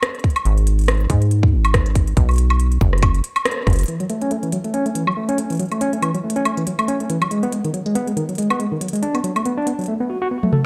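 An organic electronic drum kit opens this intricate, eerie IDM excerpt at 140 BPM in F# minor, its crisp hats, rim clicks, toms and woodblock swung on the 16ths, soon joined by a tight electronic kick and a rubbery, resonant acid bass with a saturated square-wave filter pluck. After a band accent and drum fill, the kick and bass give way around 3.9 seconds to a barky, overdriven tine electric piano playing arpeggios through a combo amp, colored by tremolo, digital delay and a filter sweep as the chords move from F#m7 through G#m to Bm7. The drums, re-recorded in a large room, close with another fill at 10.4 seconds, while plate reverb and digital ambience shape the dark production.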